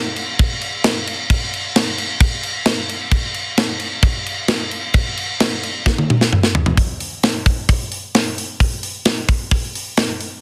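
A dense, heavily limited modern mix with light reverb frames this powerful, swaggering rock drum excerpt at 132 BPM in a straight 4/4, where a tight, up-front acoustic metal kit with a mid-forward studio-room sound, medium-tuned snare, tight, softly clipped kick, hi-hat, toms and crash drives from 0.2 seconds, plays a fill at 5.9 seconds leading into a new section at 6.8 seconds, and stops at 10.3 seconds.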